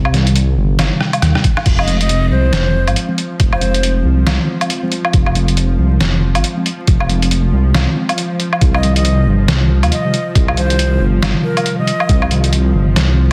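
Swung, half-time 138 BPM pulse anchors this cavernous, heavy deep dubstep excerpt in F minor, where a rumbling, detuned saw bass sits up front beside muffled, pitched-down sampler-style trip hop drums with a drum fill at 1.0 seconds, a thumpy kick entering at 1.4 seconds, mellow tine electric piano stabs soaked in dub echo in the background, a tense, nasal bowed-like drone from 2.7 seconds, and a breathy, reedy ney melody with dub echo, all under light digital ambience, vinyl crackle and a dense, heavily limited master.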